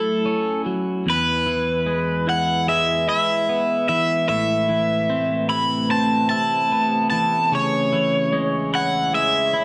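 A straight, steady 4/4 pulse carries this soaring, cinematic post-rock excerpt, with a clean, compressed twelve-string electric guitar playing picked arpeggios up front through a slapback echo. Above it, a bright, overdriven cranked stack guitar sings the melody, while a deep, moody ambient pad of detuned sawtooth and sub-octave sine sustains slow-attack chords with chorus in the background. The band plays together in a stone room whose reverb adds a live sheen, moving from F#m7 through E and Amadd9 to C#m over 9.6 seconds.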